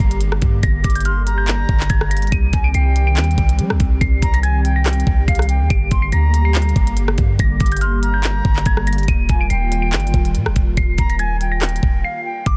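Trap hip hop at 142 BPM in a half-time feel, eerie and melancholic, moving through G minor, C minor and an Eb add9 chord. A delicate, tinkling FM tine bell carries the high melody with a warbling chorus while a pure, straight-toned concert flute plays a second line through tape echo, both floating over a hollow, detuned pad with ensemble chorus and a slow attack. Up front sit a deep, boomy 808-style bass and an electronic trap kit of knocking kick, crisp hi-hats, handclaps and rim clicks, with soft clipping on the snare, all in a dry, dense, heavily limited mix that briefly breaks at 12.0 seconds.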